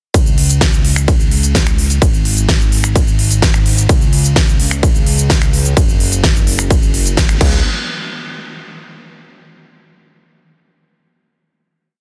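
A dense, heavily limited modern master with digital ambience frames this short, complete festival progressive house piece, euphoric and powerful in mood, in a straight four-on-the-floor pulse. It opens straight into the drop at 0.1 seconds, led by a punchy, up-front electronic kick that sits loudest in the mix. A layered big-room dance kit surrounds it with a huge snare backbeat, crisp programmed hats, finger snaps, shaker, ride and crash, all carrying a tape-warm, produced edge. Underneath, a fat analog bass built from detuned sawtooth and square waves pumps with sidechain movement and a moving notch, its thick, sustained notes following the chord rhythm in a low register. A band accent lands at 7.2 seconds before the drop gives way to a final hit that closes the piece from 7.6 to 9.5 seconds.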